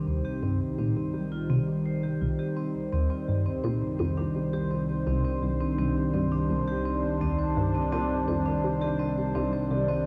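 A wave-folded, up-front pad sustains a C minor chord over a deep analog drone holding C2, while a vibraphone with medium hard mallets fades in with ringing, tape-echoed arpeggios and a slow motor vibrato. From 0.1 seconds, a squelchy, detuned blip pluck adds a phased, echoing riff in the low register. This mysterious, cosmic fragment of sequencer-driven space music moves at 84 BPM in a dark plate reverb.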